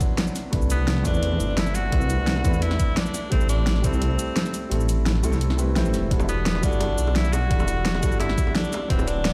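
Rolling and lush, this liquid drum and bass passage moves at 172 BPM in 4/4 with a straight feel, set in E minor and cut from a longer piece. A felt-muted upright piano comps softly throughout with a mellow, intimate tone, its thin felt and audible action noise carried on tape echo, under chords moving from D13 to Cmaj13, Am7 and Em11. An overdriven, knocking electronic kick layers with a pop drum kit whose fat snare, hi-hat and cabasa sit up front, both re-recorded in a small room, with the kick dropping out from 4.7 to 6.1 seconds. A swelling detuned saw bass enters at 0.5 seconds, dark and menacing with a fast attack and evolving filter movement, while a bright, punchy tenor saxophone takes the jazz-style solo melody from 0.7 seconds with vibrato, vintage 12-bit sampler grit and tape echo. Tight, high-tuned bongos join in the background at 6.2 seconds, and the whole mix sounds as if played on a big sound system in a bare stone room with light reverb.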